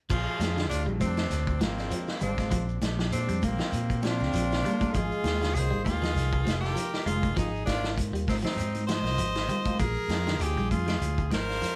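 A breathy tenor saxophone carries the melody in this joyful, hypnotic afrobeat excerpt, its punchy, close-miked tone shaded with vibrato, while a bright trumpet plays a second line alongside it. The groove sits at 99 BPM in 4/4 with a light sixteenth-note swing in Bb mixolydian, and the harmony moves from Bb9 to Ab6 and back to Bb9. A round, amped fingered electric bass sits up front over a saturated, gritty vintage drum kit with dark cymbals, a tight kick and a rolled-off top. High-tuned, damped congas and a grainy, very quiet shekere fill in the percussion. In the background, a twangy electric guitar at the edge of break-up plays arpeggios through a phaser, and a barky tine electric piano, lightly overdriven and also phased, adds accompaniment; a mellow trombone section joins as a background second line from 4.0 to 6.8 seconds, and woody claves enter very quietly at 9.8 seconds. The band plays live in one room with light reverb, giving the performance a warm, unified presence.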